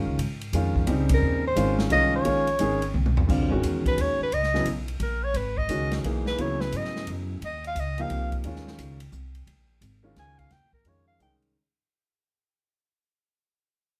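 A breathy soprano saxophone carries the melody in this spiritual, hypnotic modal jazz excerpt, its mellow subtone, scooped notes and vibrato giving it a whispered, intimate voice. A clear baby grand piano accompanies from the start, with long sustain and the audible noise of its action, while a woody, growly upright bass played pizzicato sits up front beneath it. An airy, polished big-band drum kit with a punchy kick and medium-tuned snare swings in 3/4 just after the opening, adding crash, ride, hi-hat and toms. The band hits an accent as the saxophone enters at 1.1 seconds, and a drum fill leads into the saxophone solo at 3.3 seconds, where the harmony moves between suspended thirteenth chords and the music begins to fade out. A moderate club reverb places the group a little further back in the room, and this fragment is cut from a longer piece.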